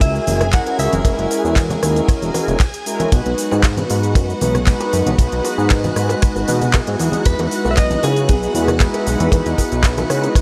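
A small room ambience frames this sleek, groovy nu-disco excerpt at 116 BPM in a straight 4/4, moving through F#9, B6 and Emaj7. A dry, tight acoustic kick sits up front beside a fat, detuned sawtooth bass with a filter sweep, while a crisp, layered electronic pop kit adds cabasa, handclaps, hi-hat, ride and rim click, and saturated bongos and congas with soft hands stay in the background. Dark, round synth brass with chorus, vibrato, ring modulation, cassette tape colour, sidechain pumping and analog delay carries the accompaniment under a lush, bright string machine that also pumps, and a clean, picked electric guitar with tremolo and delay plays the melody, pausing at 2.8 seconds and returning at 7.3 seconds.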